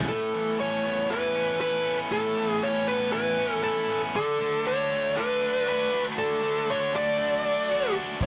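A very quiet, bright tonewheel organ holds sustained chords through a rotary speaker as a cranked stack guitar opens from the background with an overdriven, picked riff in this sunny, swaggering classic rock excerpt, moving at 118 BPM in a straight 4/4. A moment later a second stack guitar joins with its own riff, while a fuzz lead guitar takes the melody up front, its tone dark, compressed and distorted against the brighter crunch of the rhythm parts. The harmony rests on Aadd9 before shifting to D at 4.1 seconds. Only at 8.2 seconds do a punchy fingered electric bass and a cloth-damped, thuddy drum kit with a tight kick, hi-hat and a rolled-off top arrive, just as the clip ends. The sound is that of a rough rehearsal room, coloured by tube saturation and a moderate studio reverb.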